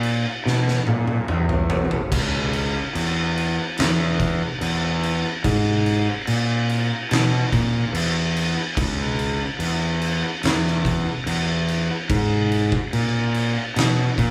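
Heavy and hypnotic, this stoner and doom metal excerpt moves at a slow 72 BPM in a straight 4/4, cut from a longer piece. A fuzz-soaked fingered electric bass growls up front through overdrive across its low register, sounding both direct and amped. An oversized, low-tuned acoustic drum kit plays alongside it throughout, with a punchy kick, fat snare, toms and dark crash cymbals, all gritty and saturated in a bright stone room that pumps around the hits. A drum fill runs from 0.4 to 2.1 seconds before the same section repeats, continuing until 14.3 seconds. The two players sound like a band performing live together in one small room, with light reverb.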